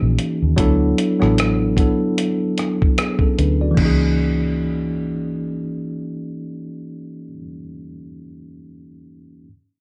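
A moderate studio reverb surrounds this introspective, sultry neo-soul R&B excerpt at 75 BPM in 4/4 with a lightly swung sixteenth feel, moving from C#m69 to D69 and back to C#m69 at 3.8 seconds. Up front, a worn, slightly out-of-tune tine electric piano plays clean accompaniment over a dark, foam-muted, round and punchy fingered electric bass. A gritty, tape-warm sampler-style drum kit with a thumpy kick, hi-hat, rim click and crash, re-recorded in a large room, sits close until 4.0 seconds, and the bass drops out at 7.3 seconds, leaving the piano alone.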